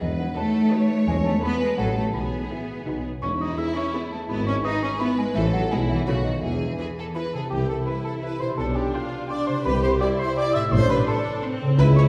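A delicate, bell-like celesta and a rich, vibrato-laden violin section open this playful, whimsical film cue in a straight 3/4 at 168 BPM, over ringing harp arpeggios, a clear cello section, a focused double bass section and a distant tuba in the background, while a second violin line and a lush viola section join at 0.4 seconds. The music starts in E major, and at 7.1 seconds a dark, roomy cor anglais takes up a second line, shortly before the celesta drops out at 7.3 seconds and the harmony turns to C major at 7.5 seconds. The quirky, magical scene sits in a wet recital hall, heard from further back in the room, and this short cut from a longer piece breaks off at 12.1 seconds.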